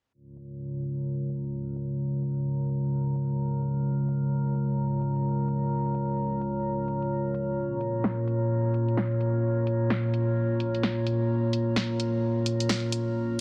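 Ghostly and melancholic, this future garage excerpt moves at 129 BPM in 4/4 with a swung sixteenth-note feel. A dark analog pad carries sustained chords from the first moment, its detuned, wave-folded tone given a sub octave, a slow attack, chorus and the grit of a vintage 12-bit sampler, shifting from Db to Bbm at 7.6 seconds. An electronic garage drum kit enters at 0.4 seconds with layered hi-hat and a cracking, tape-warm snare placed up front. From 1.2 seconds a faint, glassy texture drifts on a single high note, its calm sine overtones softened by chorus, a long release and built-in reverb. The mix sits in light reverb under vinyl crackle and a low-pass filter sweep that spans the whole passage, with a dense, heavily limited modern master.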